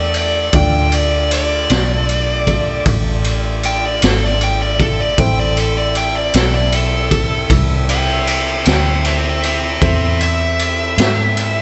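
A slow blues in 12/8 at 52 BPM, counted in dotted quarters, this brooding, soulful excerpt sits in A minor and moves from Dm to Am at 5.2 seconds. A smooth, overdriven lead guitar carries the melody as a solo throughout, its dark, picked tone placed up front in the mix. Beneath it, a raw garage drum kit plays kick drum, ride cymbal and snare drum, with a boomy kick, a medium-tuned snare, and a gritty, saturated small-room character with a rolled-off top. A vintage muted fingered electric bass sits up front with a round, punchy, foam-muted sound. A tonewheel organ holds full, sustained chords through a slow rotary speaker, with light overdrive and audible key click, while a boxy grand piano adds accompaniment in the background. The whole recording has a light reverb and a dark, softened top end, and is cut from a longer piece.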